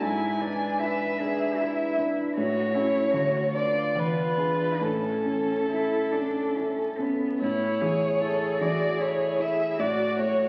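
A rich, focused violin carries the melody up front with vibrato, singing over a warm concert grand piano with deep bass and a clear, smooth cello line in this tender, rubato slow romantic movement for piano quartet in A major, moving in 3/4 at around 68-78 BPM. A smooth, even viola joins the accompaniment at 7.4 seconds. The short cut sounds like a very old 78 rpm record, with vinyl crackle and the wet reverb of a recital hall.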